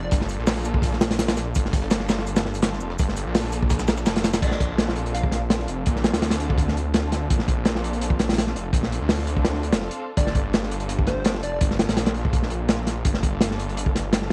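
A crunchy breakbeat kit drives this frenetic, nostalgic drum and bass and jungle excerpt at 167 BPM in a straight 4/4, its punchy kick, medium-tuned snare, hi-hat and dark crash cymbals sitting up front with a saturated, rolled-off top. Beneath it a second, sampler-style break of pitched-up, compressed hi-hat, shaker and snare runs in the background with high-pass filtering until 4.4 seconds. A thick, menacing detuned saw bass holds the low end throughout, its beating sawtooth tone saturated and forward. Distant chamber strings bow sustained chords with expressive vibrato, moving from Gm9 to Bbmaj9 at 4.4 seconds and back to Gm9. A catchy square-wave unison lead with a filter pluck and sub octave surfaces only in brief phrases, a fleeting blip at the very start, then at 4.4 and again at 10.2 seconds, colored by cassette tape and dub echo. The whole piece carries the small-room, home-cassette grit of an old tape.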